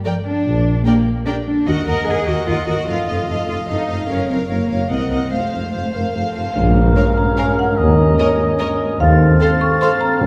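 Moving in a brisk 3/4 at 148 BPM with a straight feel, this playful, whimsical film cue has a magical, sneaky air and is cut from a longer piece. Chamber strings played sul tasto open it: a warm violin section carries the melody with light vibrato while a second violin line and violas fill in softly, and a dark, woody cello section joins a rich double bass section and a mellow tuba on the bass. A mellow French horn section holds tight sustained chords in the background as the harmony winds through minor and seventh chords. A bright cymbal swell and tam-tam sit in the background between 4.1 and 8.2 seconds. At 6.6 seconds a band accent opens the second section, where a woody marimba with hard mallets takes up the melody with a vintage, band-limited sound, joined by a pure, distant flute section, a smooth warm oboe and a mellow bassoon tucked in the background. The whole ensemble is heard from further back in a wet scoring stage, its 1.8-second reverb lending the cue a spacious, theatrical glow.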